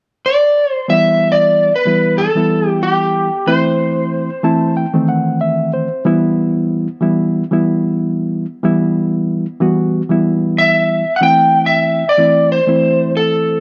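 An electric slide guitar opens this smoky, brooding blues at 0.3 seconds. Its tone is warm and slightly broken-up, played with fingerpicks and a slide, and set up front. A reed electric piano enters at 0.9 seconds as accompaniment, reedy and clean through its built-in speakers and equally forward in the mix. Over a swung 4/4 pulse, the harmony moves between E minor and A minor. The piano steps out with a fill as the guitar's first phrase winds down, then the guitar returns at 10.6 seconds to carry the melody again. Light reverb gives the pair a modest sense of room, and the passage is cut from a longer piece.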